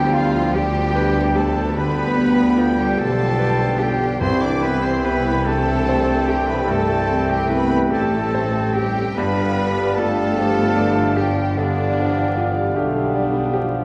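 Heard through worn, warbling old tape with vinyl crackle, pitch drift and a wet scoring-stage reverb, this short passage from a passionate, lyrical romantic movement for piano and orchestra unfolds in a rubato 12/8 over a G7, C, G7 progression. A clear, vintage-sounding grand piano sits in the background sharing the melody with an intense, vibrato-rich chamber violin section. Around them, a distant second violin section, a pure silver flute, a bright oboe and a soft-attacked clarinet weave second lines. A very quiet viola section and bassoon fill the accompaniment, and mellow French horns and tight trombones sustain chords beneath dark trumpet stabs. A focused double bass section, a smooth cello section and a roomy tuba anchor the bass, while round, soft-mallet timpani sound briefly from 4.2 to 5.4 seconds.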